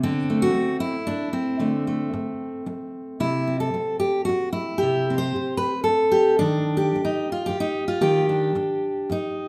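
Folk excerpt for solo fingerpicked steel-string dreadnought guitar, gentle and peaceful in a straight 3/4 at 112 BPM, its bright, full-bodied tone sitting up front in a moderate recital-hall reverb as the harmony moves from D5 to C at 3.2 seconds and Ebmaj7 at 6.4 seconds, tuned to A4 = 439 Hz.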